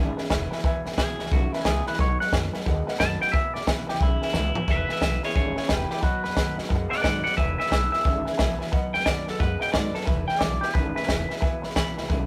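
A rough rehearsal-room sound with moderate studio reverb frames this rowdy, retro rockabilly cut from a longer piece, swinging at 178 BPM in E major over a simple E and B7 change. A clean, twangy electric guitar with a phaser solos from 0.0 to 12.3 seconds above a slightly broken-up riff guitar through a small old amp in the background, a very quiet jumbo acoustic with finger squeak, and a smooth, vintage upright piano with short sustain. A woody, thumpy pizzicato upright bass and an up-front cocktail kit with a high-tuned snare and punchy kick drive it along, the drums entering at 0.2 seconds and playing a fill at 4.3 seconds.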